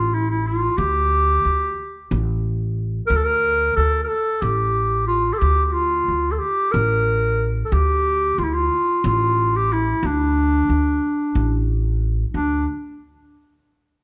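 Soulful and hypnotic, this excerpt of a Turkish makam ensemble moves in 7/8 at 182 BPM in D makam ussak, with a straight feel. A clear, distant-sounding clarinet in classical style carries the solo melody up front between D4 and Bb4, while a pizzicato upright bass with a woody, dark tone on steel strings holds the low line from A1 to D2. A moderate recital-hall reverb gives the clarinet a roomy air, and both parts fall away near 12.7 seconds as the music passes into a new section.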